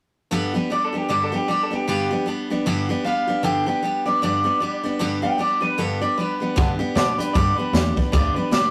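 A swung 154 BPM rockabilly number in G major opens with a bright, full-bodied picked acoustic guitar up front, joined at 0.7 s by a twangy, slightly broken-up electric guitar melody through a small old amp, before a woody, thumpy upright bass and an up-front brushed drum kit with a boomy kick and high-tuned snare come in at 6.6 s, giving this rollicking, retro fragment a rough rehearsal-room feel in moderate reverb.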